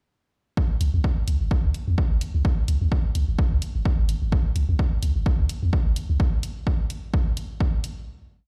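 Cool and clinical, this short minimal techno piece runs at 128 BPM in 4/4 in C# minor, with a 56% swing on the sixteenths. An overdriven, punchy analog kick holds a four-on-the-floor pulse up front from 0.6 s. A deep sine sub bass with a pitch-drop attack rolls a staccato groove between G#1 and E2 from 0.8 s with sidechain pumping, while quieter overdriven closed hi-hats carry the programmed hats and backbeat until 7.9 s, all set in the large, bare-room reverb of a big sound system.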